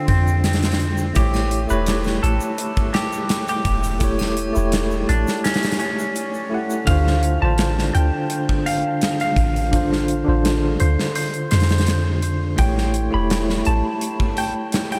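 Smoky and hypnotic, this trip hop passage, cut from a longer piece, drifts in a straight 4/4 over a slow alternation of Dm7 and A7. A clean, compressed semi-hollow electric guitar carries the picked melody, roughened by vintage 12-bit sampler grit and trailed by tape echo. Beside it, a bell-like tine electric piano sits up front with a bright, direct tone, its accompaniment shimmering with tremolo and its own tape echo. Underneath, a soft 808-style bass gives deep, round sine notes with a fast attack that decay into the dark low end until 13.8 seconds. A gated 80s drum kit adds a punchy kick, medium-tuned snare and hi-hat in a polished, airy stone room, while an egg shaker and triangle linger faintly in the background until 6.8 seconds. A huge ambient reverb soaks the dreamy mix.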